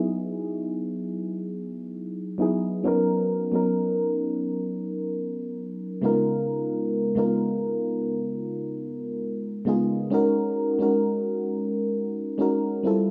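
R&B at a slow 66 BPM in F# major, this dreamy, romantic excerpt features a mellow FM electric piano playing alone from 0.0 to 13.1 s, its soft, round tone carrying a noise layer, a fast attack and a dark, chorused sheen, with a filter sweep running until 10.1 s. The chords move from Emaj9 through Bmaj7 and C#13 before settling on F#69 at 10.1 s, where a new section begins. The piano sits up front in a moderate concert hall reverb blended with small room ambience.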